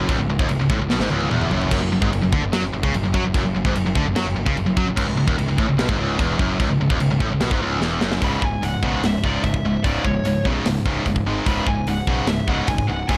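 Epic and aggressive, this heavy metal excerpt drives two bright, picked, distorted rhythm guitars through a low riff over a growly, fuzz-laden electric bass and an up-front acoustic drum kit with a tight kick, medium-tuned snare, toms, hi-hat, crash and china, whose fills lead into a distorted lead guitar melody entering at 8.2 seconds, all set in a dark production with light reverb.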